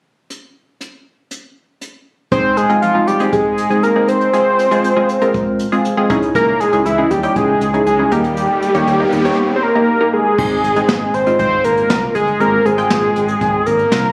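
Synth-pop with a wistful, nostalgic mood, this clip opens on a dark, boomy jazz brush drum kit in a small room before a fat, mellow analog lead with chorus, vibrato and tape echo carries the melody from 2.3 seconds, over a punchy, funky polysynth comp with a plucky filter. A smooth, sawtooth-and-triangle synth bass joins at 6.4 seconds, and an electronic riser appears at 8.1 seconds as the chords move from Ab through Fm/Ab and Dbmadd9 to Eb. The lead and comp sit up front, while the brushed kit stays soft with a rolled-off top, all heard through light reverb with the slightly roomy quality of a phone recording.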